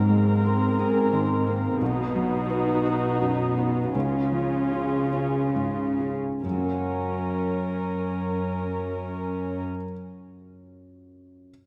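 A soft, mellow felt-muted upright piano with a thick, intimate tone accompanies this moving, hopeful excerpt of a cinematic film score in a rubato 6/8. A dark viola section with light vibrato and a pure, floating cello section bass sit up front, both bowed sul tasto with soft attacks, while a ringing, fingerpicked concert harp plays arpeggios in the background. The music slows from 0.8 to 6.4 seconds as the chords move from G#add9 through B and C# to F#, and the strings drop out at 9.6 seconds. The harp and piano continue together until the harp fades, and then the piano rings on by itself inside a moderate scoring-stage reverb.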